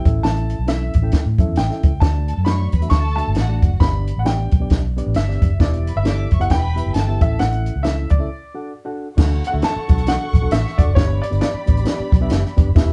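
Captured as a band playing together in one room and dubbed to cassette tape, this cut from a longer piece carries a light reverb. It's an uplifting 1960s-style soul groove with a swung feel, driven by a compact cocktail drum kit with a punchy kick, a high-tuned snare and dark cymbals, sitting up front beside a round, foam-muted vintage fingered electric bass. A reedy electric piano, lightly overdriven through its built-in speakers, fills in the accompaniment, while a clear but worn grand piano with short sustain carries the melody. From 2.3 s, a lush bowed string section adds a smooth, vibrato-rich second line. A brief break at 8.3 s leads into a new section at 9.2 s.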